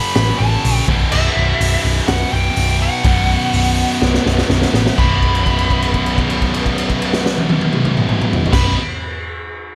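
A straight 4/4 hard rock groove with a menacing, heavy mood, cut from a longer piece, is driven by a double-tracked, bright high-gain guitar riff and a raw garage drum kit with a punchy kick, high-tuned snare and gritty, saturated character in a pumping small room. A dark, round hollow-body bass sits beneath them, while a nasal lead guitar with a parked wah and overdrive carries the melody. After a drum fill at 4.0 seconds, a held note sustains from 5.0 to 8.5 seconds, all wrapped in light reverb.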